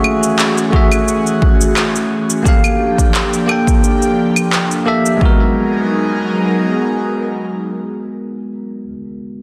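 A bell-like tine electric piano with delay and an airy, breathy pad treated with chorus and phaser open this relaxed sunset chillout fragment in G# minor at 87 BPM with a light 16th-note swing, joined at once by overdriven electronic claves, cabasa and handclaps and, from 0.7 seconds, a punchy, up-front electronic kick, the percussion dropping away by 5.4 seconds as the chords move from F#m9 through Gm9 to G#m9, set in a lush hall reverb and a dense, heavily limited modern master.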